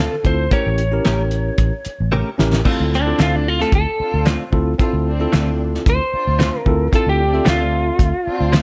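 Mournful and smoky, this short cut of straight-eighth soul blues in D minor moves at 112 BPM, with a slightly broken-up lead guitar singing the melody up front over clean, direct-recorded electric guitar stabs coloured by analog chorus, a round, foam-muted fingered bass and a bell-like tine electric piano. A cloth-damped, thuddy drum kit with a fat snare, tight kick and dark cymbals sits close in a small room, and its fill from 2.1 to 2.7 s ushers in the lead guitar solo. At 2.7 s a rich, distant symphonic string section enters in the background with sustained bowed chords as the harmony returns to Dm7.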